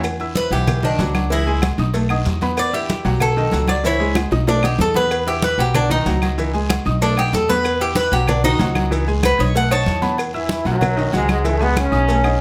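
A picked Cuban tres leads this sunny, joyful salsa excerpt, its metallic, double-strung, partly octave-doubled tone sitting up front as it solos from 0.4 seconds over a cycling E major progression of E5, Badd9, C#m7 and B7. The worn baby grand piano supplies a present, intimate accompaniment with short sustain and audible action noise, while the upright bass plays up front with a thumpy, dark gut-string pizzicato. A dense percussion bed drives the 189 BPM straight 4/4 groove: damped, thin-skinned congas up close, with soft-handed low-tuned cowbell and bongos, ringing metal-shell agogo bells and timbales, claves, raspy vintage guiro and grainy, mellow maracas in the background. A drum fill arrives at 4.2 seconds. At 10.4 seconds a brilliant, tight trombone section takes over the melody with vintage, pop-style vibrato and a soft attack, all under a light reverb.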